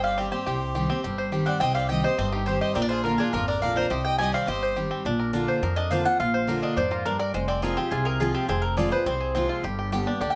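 Bluegrass at a driving 209 BPM with a haunting minor cast, this excerpt pairs a twangy, up-front fingerpicked banjo melody with a round, double-strung mandolin, while a biting, airy-bowed fiddle adds a close second line until 4.7 s, over a full-bodied jumbo acoustic guitar with audible finger squeak and a thumpy, woody gut-string upright bass, all in moderate studio reverb as the chords move from Cm through Bb and Fm to a closing G.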